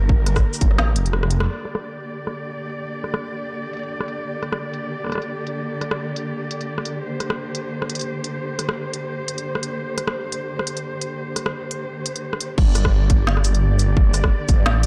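A dark production with light reverb and digital ambience frames this tense half-time drum and bass excerpt, moving at 173 BPM in 4/4 with a swung sixteenth feel, centred on G minor. A lush, bowed symphonic cello section holds sustained chords throughout, expressive with vibrato and a soft attack, and pumps against a sidechain. A swirling, thick, detuned saw bass with a phaser and saturation sits up front alongside a hard-clipped, tape-tinged electronic kick, both sounding briefly at the opening; the kick drops out at 0.8 seconds and the bass follows at 1.5 seconds. The organic electronic drum kit carries on with a woody snare, smooth hats, rim clicks, shaker and crash, all filtered to a muffled tone, and a drum fill lands at 1.1 seconds before a filter sweep runs across the drums through the middle stretch. At 12.6 seconds the drop arrives, bringing the bass and kick back for a heavier close.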